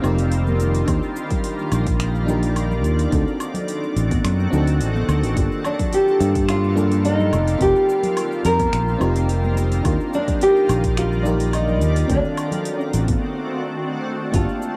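The recording has the soft grain of a home cassette tape, set in a booth with a short, moderate ambience. This sunset chillout piece, cut from a longer work, moves at a relaxed, wistful 107 BPM in a straight 4/4, with the instruments tuned to A4 = 439 Hz. A round, dark FM electric piano plays the accompaniment, coloured by chorus, analog delay and plate reverb, over an ethereal pad of detuned, slow-blooming sustained chords with an octave-up shimmer and a granular edge. Underneath, an up-front, punchy fingered electric bass carries the low end, with soft-handed congas in the background and a deep house kit of cabasa, finger snaps, metallic hi-hat and woodblock, while an overdriven, deep electronic kick joins at 0.9 seconds. At 5.7 seconds a warm, fingerpicked nylon-string guitar takes the melody, its finger squeaks caught through delay and plate reverb. The harmony cycles through F9sus4, Ebmaj9, D7b9 and Gm9, and the congas drop out at 13.2 seconds as a brief break arrives.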